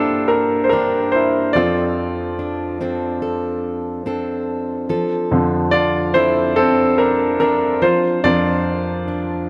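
Emotional and heartbroken, this short cut from a longer pop ballad unfolds at a slow 72 BPM in 4/4 with a straight feel, set in D minor. A clear concert grand piano sits up front, its polished, present tone pairing a deep bass with a short sustain as it plays a solo across the full 9.5 seconds. Beside it, a fingerpicked, plugged-in jumbo steel-string acoustic guitar spins arpeggios throughout, its full-bodied sound also placed close to the listener but mixed beneath the piano. The harmony moves from Gm7 through Dm7/F and F6 before settling on Bbadd9/F at 7.8 seconds. A moderate plate reverb with a long tail gives the pair a glossy, spacious sheen.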